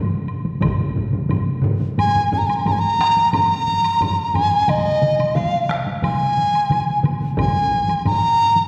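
Japanese traditional taiko ensemble music, ceremonial and powerful in a straight 4/4, opens with three layered taiko ensembles: one struck with heavy sticks, close and dry; another with hard sticks and a vintage, band-limited tone; a third heavy-stick group set in a live room. A woody woodblock and brief hard-stick solo taiko hits sit in the background. At 2.0 s a mellow large dizi enters up front with an airy bamboo tone, buzzing membrane, soft attack, rolled-off highs and expressive vibrato, while a concert hall reverb places the whole performance further back in a resonant space.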